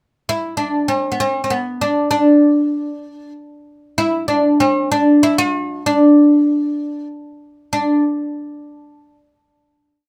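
A solo fretless oud opens at 0.3 seconds, its plectrum-plucked double strings sounding woody and deep as it spins a modal melody with ornaments in D maqam rast, placed up front in light reverb. This complete Arabic piece moves at a stately 96 BPM in 3/4 with a straight, passionate feel, the melody staying between B3 and F#4-50c. The playing settles on a final note at 7.7 seconds, and the oud stops at 8.0 seconds.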